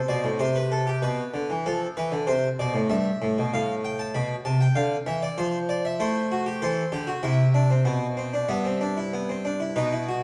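The recording sits in a wet recital hall, with a reverb tail of about 1.7 seconds and a vinyl crackle running beneath it. A solo harpsichord plays a baroque-style three-part fugue at 96 BPM in 4/4. The playing is driving yet contemplative. The harpsichord is placed up front, and its French-style voicing, with two sets of strings, gives a full, airy, plucked tone across a span from G2 to B5. The harmony begins on A minor and moves through half-diminished, major seventh and ninth colours. It settles into E minor from 6.0 seconds and closes on E minor over G. This is a brief passage cut from a longer piece, lasting just over 10 seconds.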